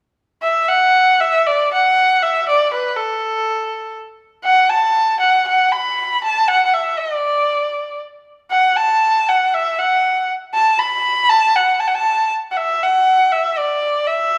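Chinese traditional music in a straight 2/4, festive yet graceful, carried by a single bowed erhu playing solo from 0.4 to 14.4 seconds. Its nasal, biting tone sits up front, shaded with light vibrato and portamento as the line moves through a range from A4 to B5. A moderate reverb lends a sense of a scoring stage to this excerpt from a longer piece.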